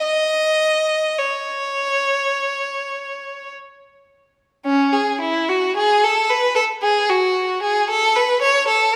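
A single bowed violin, clear and focused with vibrato, carries this flowing, radiant fragment of a baroque-style classical suite movement for unaccompanied violin, unfolding in a free rubato 4/4 from the opening moment to 8.9 seconds, sitting up front yet slightly distant within a moderate concert-hall reverb.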